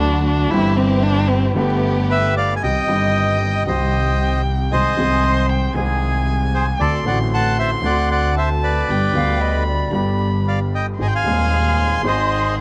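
A reedy, bright bandoneon carries the melody up front from 2.1 seconds in this tense, dramatic tango excerpt at 115 BPM, played with a rubato feel in C harmonic minor, after a nasal, expressive bowed violin opens with a solo featuring portamento and then continues as a second line, while a deep-bassed, open concert grand piano accompanies, a woody bowed double bass with light vibrato holds the low end up front, a smooth studio string section adds background stabs at the opening and close, an airy metallic flute joins briefly from 5.2 seconds, and the recording carries light reverb along with vinyl crackle.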